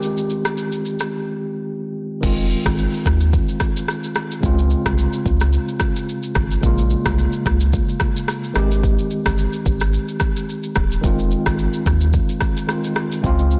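This short afrobeats excerpt has a blown-out, overdriven sound with a light touch of reverb, and its mood is breezy and sunny at 109 BPM in 4/4 with a gentle 16th-note swing. A clean, up-front tine electric piano carries the accompaniment throughout, heard as if through built-in speakers and shaped by a low-pass filter, with a filter sweep over the opening 2.2 seconds. The electronic, produced afro-pop drum kit runs the whole way, pairing a deep kick with crash cymbal, rim click and shaker, and soft clipping on the snare, and the passage has a brief break from 1.1 to 2.2 seconds. At 2.2 seconds a round, sine-like sub bass enters, mellow and sustained with a fast attack, sitting deep under the rest. The chords move through Abmaj7, Fm7, Dbmaj7 and Bbm7 before returning to Abmaj7 and Fm7, giving the passage a relaxed, glowing lilt.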